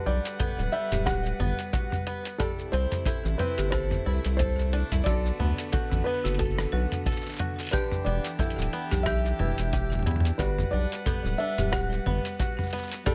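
A felt-muted upright piano opens this playful, pastoral folktronica excerpt in G major, carrying the melody with a soft, muted tone, audible action noise, vintage 12-bit sampler grit, digital delay and plate reverb, while a rich string quartet holds sustained chords with light vibrato and an airy, sul tasto bow. A twangy bluegrass banjo, played with fingerpicks, spins arpeggios through its own delay and plate reverb, and a round analog bass enters at 0.1 seconds, deep and up front with a filter pluck. The rhythm settles at 90 BPM in 4/4 with a gentle 16th-note swing, as a compressed lo-fi sampler-style kit of cabasa, hi-hat, rim click and toms joins alongside a punchy acoustic kick with a rolled-off top. A woody folk marimba struck with hard mallets adds a dry, rustic second line in the background, treated with delay and plate reverb. The harmony drifts from Gmaj7 through C6, Bm7 and Em7 before returning to Gmaj7, and the bass drops out at 12.2 seconds while the other parts carry on to the cut at 13.1 seconds.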